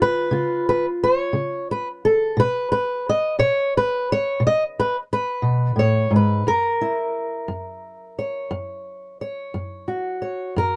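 A fingerpicked old ladder-braced acoustic guitar, dark and boxy with the woody tone of old strings, sits up front alone in this swaggering, gritty acoustic country blues excerpt, set at 58 BPM in a straight 12/8 in F# mixolydian and moving from C#7 through a rootless G#madd11 at 2.4 seconds to F#7 at 6.5 seconds, caught by close, detailed microphones with light reverb.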